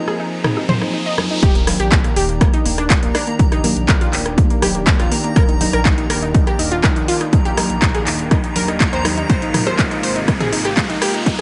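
A punchy, overdriven kick arrives at 1.4 s to drive this uplifting, hopeful progressive house excerpt at 122 BPM in Eb major, together with a dark, rumbling detuned saw bass. Both sit beneath parts heard from the outset: a bright, pumping analog pluck arpeggio with tape echo, a lush, chorused unison pad, a dreamy reversed swelling texture, a background riser, and two deep house kits of handclaps, metallic hats and rim clicks alongside congas and toms. A build-up with a filter sweep follows from 1.4 s, while an intimate, very quiet grand piano melody sounds from the start until 1.1 s.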